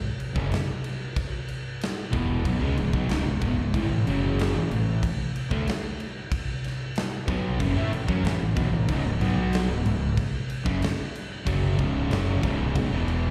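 A straight 4/4 pulse at 93 BPM drives this hypnotic, sludgy stoner and doom metal piece in C# minor, cut from a longer performance. The big rock drum kit enters at 0.2 seconds, its punchy kick, medium-tuned snare and bright crash cymbal sounding up front in a big room. A double-tracked fuzz guitar carries the riff across a range of C#2 to E4, its distorted, picked tone given a slapback echo. The fingered electric bass joins at 0.4 seconds, growly and overdriven, reaching from C#1 to A2 with a punchy, fuzzy edge. The harmony moves from C#m to A5 at 3.7 seconds and back to C#m at 8.9 seconds, all heard as a live gig through the venue's PA with recital hall reverb and small room ambience.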